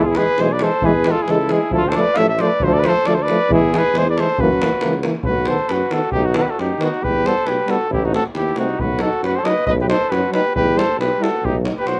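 The sound is dry and open-air, with little reverb and the band heard outdoors. This is a restless, bittersweet slice of Balkan brass-band folk music at 136 BPM in 2/4, with a swung sixteenth-note feel. It starts in E phrygian dominant, moving through E, Dm and F#7, and shifts to B phrygian dominant at 5.3 s, where B, Em and Am chords take over. Up front, a flugelhorn with a soft attack and smooth top carries the melody in a classical style, while a second, distant and roomy flugelhorn shadows it lower down with a slapback echo. A clear, vintage-toned euphonium sits in the background and a close-miked, gentle trombone fills the accompaniment, both with slapback echo, until they stop at 11.7 s. A warm tuba with vibrato anchors the bass from afar, and a tight davul, entering at 0.1 s and echoed in a large room, drives the percussion.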